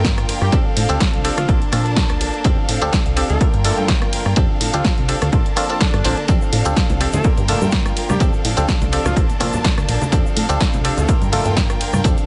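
Joyful and feel-good, this filtered disco house excerpt pumps with a punchy, tape-warm electronic kick up front, a plucky, funky analog bass, punchy drum-machine hats, ride, rim click and snare, a twangy phased muted clav entering at 0.5 s, a bright direct clean guitar riff, rich bowed violin chords with vibrato, a mellow tape-echoed horn melody in the background, and soft-handed egg shaker and congas joining at 6.3 s, all cycling through Gm7, F6 and Bbmaj7 in a dry, dark-topped mix.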